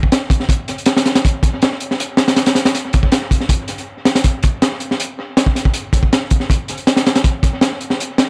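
The recording sounds echo-heavy, set in a light reverb with a studio-room feel, and the drums sit up front. This raw, dark drum and bass fragment runs at 160 BPM in a straight 4/4 and is cut from a longer piece. A crunchy acoustic breakbeat kit of hi-hat, kick and snare plays from 0.0 to 8.3 seconds. Its tone is saturated and gritty, with a rolled-off top that keeps it dim. A punchy kick sits under a high-tuned snare, and a dub echo on the kit gives the break its shadowy trail.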